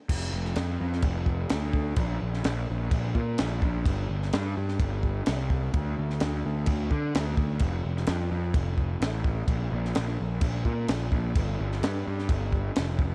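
Jangly and wistful, this indie rock excerpt in F major moves at a straight 128 BPM in 4/4, pairing an up-front, overdriven fuzz bass picked between F1 and D3 with a compact cocktail drum kit of crash cymbal, high-tuned snare and punchy kick that sounds dark and smooth in a small room, both playing together from 0.1 to 13.1 seconds under light reverb.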